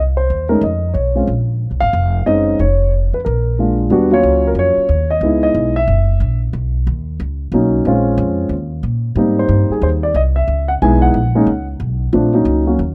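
A jazz piano trio excerpt with a late-night, moody character, moving at a brisk swing in 4/4. The upright bass is plucked, woody and dark, its steel strings sitting up front as it carries the low end from the opening moment. A dark, mellow concert grand piano enters at 0.2 s to take the melody, its deep bass register adding weight beneath the tune. At 3.9 s the harmony shifts into a new section, wandering through lush extended chords such as Ebm7, Bmaj7 and Abmaj9 before settling on Bmaj9. The sound is dry and close, in the manner of a 1970s studio, with a small room ambience framing the two instruments. It is cut from a longer piece.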